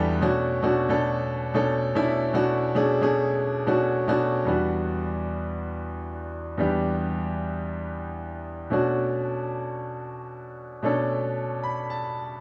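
Soulful and hypnotic, this short amapiano passage, cut from a longer piece, moves at 113 BPM in 4/4 with a gentle swing on the sixteenth notes. A clear concert grand piano carries the whole passage alone, spanning from E2 up to B5, its deep bass and open, up-front sound placed close to the listener. The harmony settles on Bm7 at the start, shifts to Em7 at 4.5 seconds, and returns to Bm7 at 8.7 seconds. The opening stretch forms a drop before the second section begins, and the piano closes with a fill from 11.4 to 12.4 seconds. Light reverb and a studio ambience frame the instrument, and the tuning sits slightly below standard pitch at A4 = 439 Hz.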